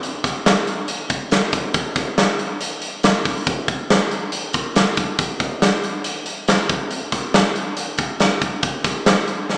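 Indie pop excerpt at 139 BPM in a straight 4/4, nostalgic and breezy, carried by a big acoustic rock drum kit, up front with hi-hat, punchy kick and medium-tuned snare, ringing in a bright stone room and a moderate recital-hall reverb with a small-speaker character across its 9.6 seconds.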